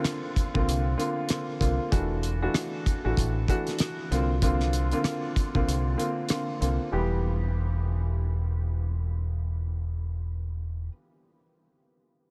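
Tough and gritty, this boom-bap hip-hop excerpt swings over a woody upright piano whose short-sustained chords pass through a cassette-tape haze and filtering, moving from suspended ninth voicings to a plain minor chord near 6.9 seconds. A cloth-damped drum kit with a fat snare, tight kick, rim clicks and hi-hat sits dry and up front with a rolled-off top until it drops out at 6.8 seconds, while a dark, round fingered electric bass enters at 0.6 seconds and carries on to the end. The whole mix is soaked in a huge ambient reverb that gives it a dreamy cast.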